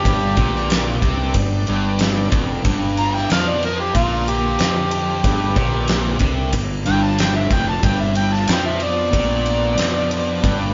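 Captured live in one room with moderate reverb and a rolled-off top end, this raunchy, swaggering blues rock and southern rock excerpt at 92 BPM in G mixolydian puts a gritty, amplified harmonica with tongue slaps and scooped notes on the melody, over a double-tracked fuzz guitar riff, a growly fingered electric bass, a huge arena drum kit with a fat snare and punchy kick, and, far back in the mix, a dark lead guitar line and a shouting tonewheel organ on slow rotary.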